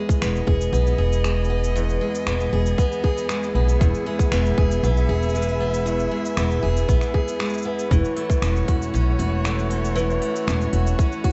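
Vinyl crackle and a dulled, rolled-off top sit over light reverb and small-room ambience in this hopeful, pastoral folktronica excerpt in straight 4/4. Up front, a bright picked steel-string acoustic guitar with tape echo plays arpeggios, finger squeaks audible. Beneath it sit a growly, woody pizzicato upright bass entering at 0.2 s, a tight, overdriven electronic kick, and a softer overdriven electronic kit of crisp hats, cabasa and finger snaps. A close chamber string quartet sustains bowed chords with vibrato and portamento, shifting from Emaj7 to F#m7/E at 7.9 s.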